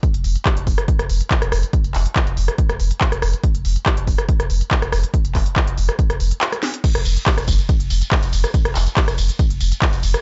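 A punchy analog kick drum sits up front and drives this relentless, hypnotic peak-time techno excerpt at a straight 141 BPM in 4/4. Around it, a layered electronic kit with a cracking snare, smooth hi-hats, handclaps, rim clicks, tambourine, ride and crash cymbals carries a tape-warm character from being re-recorded in a small room. Beneath them, a deep, round sine sub bass sits on F1 with a fast attack and sustained notes, roughened by overdrive, darkened by a low-pass filter and pumping against the sidechain. A short break arrives at 6.4 seconds, a drum fill follows at 6.6 seconds, and the drop hits at 6.8 seconds to carry the groove through to the end. The mix is dry and gritty, with a hardware feel and a dulled top end.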